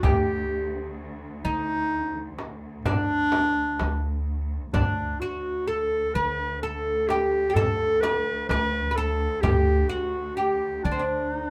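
This Turkish makam ensemble piece moves in a straight 10/8 and carries a passionate, warm mood through this short section cut from a longer work. A classical-style clarinet leads the melody, sitting up front as the soloist, while a fretless oud, plectrum-plucked on double strings, adds a woody, deep second line. A pizzicato upright bass with steel strings gives a growly foundation, and a lush bowed cello section holds a low drone on D2 with vibrato and a smooth, focused top, placed well behind the other parts. A crisp metal-shell darbuka played with soft hands sits in the background, joined by a small, bright frame drum that drops out at 9.7 s. The whole ensemble sounds as if gathered in a small room with a moderate ambience.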